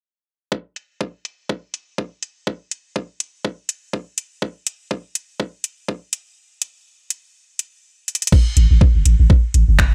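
Swung sixteenths at 123 BPM drive this hypnotic, sparse minimal techno excerpt, where a knocking, high-passed electronic kick enters at 0.5 s, a garage kit of metallic, low-passed hi-hats, finger snaps and crash cymbal joins, the kick drops out from 6.4 s to 8.3 s with a drum fill at 8.1 s, and a deep, punchy sine sub bass with a pitch-drop attack and sidechain pumping arrives at 8.6 s, all in a dry, up-front, tape-flavoured mix.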